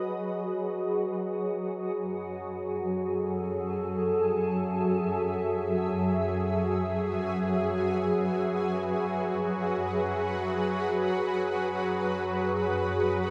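Ambient music in free time and F# dorian, reflective and melancholic, in which a shimmering, ethereal pad holds sustained chords up front with chorus and its own reverb from the start, joined at 2.0 seconds by a dark, intimate chamber cello section bowing a low F# with vibrato beneath it, all set in a huge, wet reverb as this fragment of a longer piece drifts from B6/F# through F#m7 to B5/F#.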